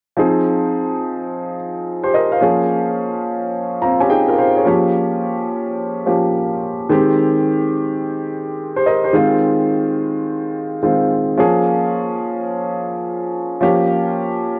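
A present, up-front grand piano with long sustain carries this confident, punchy R&B passage in F minor at 107 BPM with a 16th-note swing, moving through Fm7, Bbm7, Gm7b5 and Abmaj7 chords and slipping in a fill at 3.5 seconds, all heard through cassette tape coloring and a light small-room reverb that give this home recording, cut from a longer piece, a dusky, lo-fi character.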